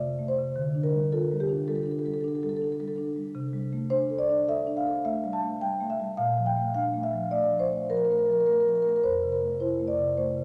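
A solo marimba played with soft mallets opens this brief fragment of a contemporary classical piece, its rosewood bars sounding woody, mellow and round. The mood is flowing and reflective, moving at around 106 BPM in 5/4 with a rubato feel in D minor, tuned slightly high to A4 = 443 Hz. The instrument spans from F2 up to A5, giving it a full range from deep, warm lows to gentle upper notes. The harmony drifts from F through Dsus4, Csus2 and Bbmaj7 before settling on Fmaj7 near 9.0 seconds, and the suspended and seventh chords keep the music open and unresolved. The marimba is close-miked and up front with a dry core, set inside a long church reverb that lingers around every note until the clip ends at 10.4 seconds.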